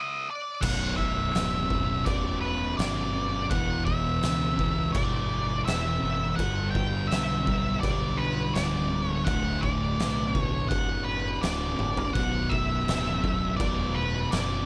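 Stoner and doom metal in B minor at a heavy, hypnotic 83 BPM, cut from a longer piece: an up-front octave-fuzz lead guitar carries the melody alone until 0.6 s, when two thick fuzz guitars set back in the mix take up the riff, a growly fuzz fingered electric bass with overdrive holds the low end, and an oversized low-tuned drum kit with a boomy kick, fat snare and shadowy cymbals drives a Bm–Em–G–D progression, with a drum fill at 11.8 s before the return to Bm, set in a small room with light reverb.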